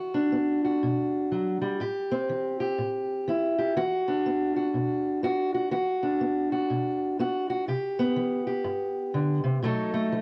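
Smoky and mournful, this short fragment of a longer blues piece moves at 123 BPM in 4/4 with a swung eighth-note feel, settled in E minor. A lone fingerpicked steel-string acoustic guitar carries everything, its dark, boxy parlour tone sitting up front and ranging from G2 to A4. The harmony drifts from E7sus2 through Am7 and Esus2 to Cmaj7, arriving on B7 at 9.6 seconds just before the 10.2-second cut. Light reverb and a small room ambience surround the guitar, captured as a home recording on cassette.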